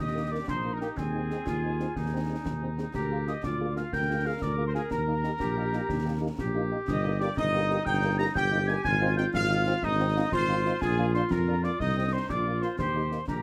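A dark, up-front tuba anchors this spirited, festive military-style march for wind band, holding the bass line in a smooth-topped classical style. Above it, a tight, mellow trumpet section carries the melody with light vibrato and a soft attack, while a wooden piccolo adds a pure, crisp second line high over the band, its vibrato gentle and its highs rolled off. A warm, vintage-sounding woodwind section adds a further second line in the middle register, and a mellow French horn section fills in the accompaniment from 0.1 to 13.2 seconds. Concert snare drum, concert bass drum and clash cymbals enter at 0.5 seconds with an acoustic, small-room sound and dark cymbals. Moving at 122 BPM in a straight 6/8 in Eb major, the harmony travels from Eb through Ab/Eb, Bb7/D and Fm7/Ab before closing a cadence back on Eb, with light reverb around the band in this passage cut from a longer piece.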